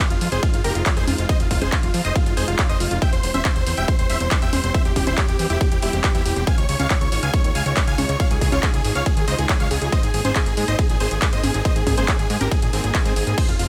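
Uplifting trance in 4/4 with a euphoric, bittersweet mood, cut from a longer piece and moving through Fm7, C/E, Dbadd9 and Abadd9 under digital ambience. A huge, bright supersaw lead carries the melody with sidechain pumping and tape echo, while a very quiet, punchy plucky unison lead adds a catchy second line. A layered, up-front electronic kick and a tape-warm analog drum machine of congas, handclaps, hi-hat, ride and crash cymbal (its hats, cymbals and percussion pumping) drive the groove, joined at 0.1 seconds by a fat, saturated sawtooth bass that also pumps.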